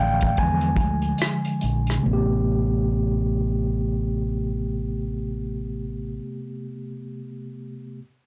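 R&B and neo-soul at a sultry, smooth 70 BPM in A minor, this excerpt opens with a featured solo on the mellow tine electric piano while the tempo slows over the first 2.0 seconds, moving from E7b9 to Am9. A round, dark fretless bass with transformer saturation and subtle chorus sits up front until 6.2 seconds, and a small-room acoustic kit of bundle-stick rim clicks, hi-hat and a punchy kick plays only from 0.2 to 2.0 seconds. The whole recording is blown-out and overdriven, with light reverb, and the clean piano sounds as if heard through its built-in speakers.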